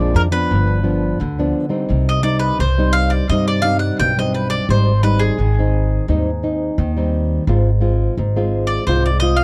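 A picked mandolin carries the melody with a round, double-string tone touched by tape echo, and from 1.9 s it moves into a solo that runs to the end of this short cut from a longer piece. The mood is bittersweet yet lively, in a samba and choro style with a straight feel in four. Beneath it, a classical nylon-string guitar is thumb-plucked for the accompaniment, its finger squeaks audible. An acoustic upright bass on steel strings gives a woody, thumpy pizzicato foundation. The harmony moves from Bb7 and G7 in the brief opening into Cm, Abmaj7 and Fm/Ab under the solo. All three instruments sound close and up front in a dry, 1970s-style studio recording with little reverb.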